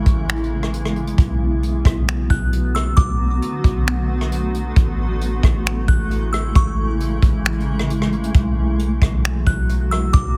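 Up front, a soft brush drum kit with a punchy kick, hi-hat, rim click and finger snaps drives this hazy, ethereal cloud-rap excerpt at 134 BPM in a half-time feel, over a deep, round 808-style bass. A blurred, slowly evolving granular pad sustains Amaj7 and Bm7 chords in B dorian beneath, and a delicate, tinkling FM bell melody with chorus and tape echo enters at 2.3 seconds. The mix is dry and heavily compressed, with a radio-like sound.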